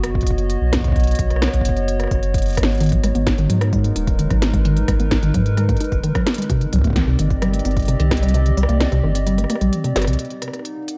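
Melancholic and glitchy, this IDM excerpt moves at 130 BPM in a straight 4/4, with a slightly off-standard tuning and a dark, warm production that keeps the top end rolled off. A warbling, nostalgic pad carries sustained chords throughout, its detuned, wave-folded tone softened by chorus and its own reverb into a lo-fi, mellow haze over a progression from B through Abm7 and Cm7 to Ebm. Beneath it, a round sine sub bass holds the low end, while a deep electronic kick, re-recorded in a small room, anchors the beat until it drops out at 8.3 seconds. An overdriven electronic kit with a woody snare, rim click and smooth hi-hats adds an organic, textured pulse across the whole passage. From 2.8 seconds a rubbery, resonant acid bass enters with plucky, decaying arpeggios, saturated and thickened by analog chorus and digital delay. Light reverb and a digital ambience frame the mix in a close, shadowy space.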